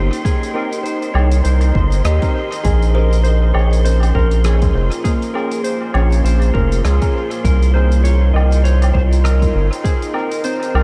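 Meditative and deep, this ambient dub excerpt sets a clean slide lap steel melody, bathed in lush chorus and analog delay, over an up-front, round analog bass, a dark detuned pad with slow attack and long release, woody thumb-plucked kalimba arpeggios with analog delay in the background, an airy wind-like noise layer, very quiet tine electric piano stabs, a tape-warm layered electronic kick, and a big-room soft-mallet kit of hi-hat, rim click and woodblock soaked in dub echo, all on gently swung 16ths over chords moving from Cm7 to Bbm7 and back.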